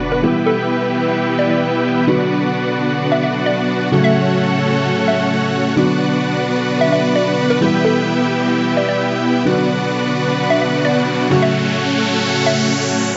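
An impact and sub drop open this emotional, anthemic EDM excerpt in B minor at 130 BPM, where a huge, detuned supersaw riff sits up front through a low-pass filter over a soft, felt-muted upright piano with audible action noise and rich, bowed studio strings holding sustained chords, while a hollow, warbling square pluck carries the melody through chorus and dub echo on a moderate scoring-stage reverb, moving through Em, Bm and F#m until a riser builds from 10.6 seconds.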